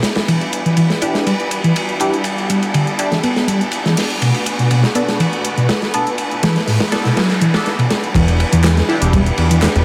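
Light reverb and studio ambience frame this raw, energetic breakbeat excerpt in E minor, which moves at 122 BPM in a straight 4/4 and is tuned to A4 = 438 Hz. A crunchy acoustic breakbeat kit sits up front with a tight kick, a medium-tuned snare, dark cymbals and a gritty, rolled-off top, while an overdriven analog drum machine adds handclaps and hi-hat from a large room. A reedy electric piano carries the riff through fast tremolo, tube saturation and tape echo, and lush bowed strings hold sustained chords that pump against the sidechain. A nasal, band-passed chord stab with phaser sits in the background under a filter sweep as the harmony moves from Em7 to Bm7. A noise sweep enters at 6.7 seconds, a fat, detuned analog bass with a fast, plucky attack comes in at 8.1 seconds, and the drop arrives at 8.2 seconds back on Em7.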